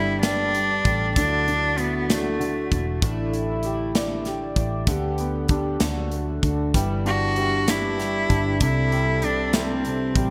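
Heartfelt and romantic, this short excerpt is a pop ballad in 6/8 at 64 BPM in G major, with a bright 1980s-style digital sheen, light reverb and a small-room ambience. A clear, earthy solo cello carries the melody up front with light vibrato and an airy bow, touched by delay, singing from the start to 2.8 seconds and returning from 7.1 seconds. Behind it, a dark, distant French horn section holds a roomy second line in classical style, while a baby grand piano with long, open sustain and analog chorus lays down the accompaniment. A full-bodied jumbo steel-string acoustic guitar, fingerpicked and set in the background, adds arpeggios colored by chorus and delay, and a foam-muted vintage electric bass supplies a round, dark, amped low end. A polished studio drum kit enters at 0.2 seconds with a tight kick, a medium-tuned snare and hi-hat, sitting up front with gated reverb, as the harmony moves through Gadd9, Dadd9, A7sus4, G/D, D, G6 and Cadd9.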